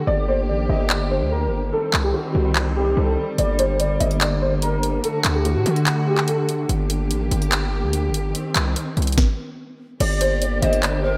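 Brooding and menacing, this half-time trap excerpt at 145 BPM in G harmonic minor sets a dark, intimate baby grand piano melody with chorus and delay, audible action noise and all, over veiled, con sordino string chords and a saturated, heavy distorted 808 bass, while a knocking trap kit with sharp snare and bright hats arrives at 0.9 s and an airy, chiffy pan flute with delay joins at 10.0 s, all bathed in a dreamy plate reverb.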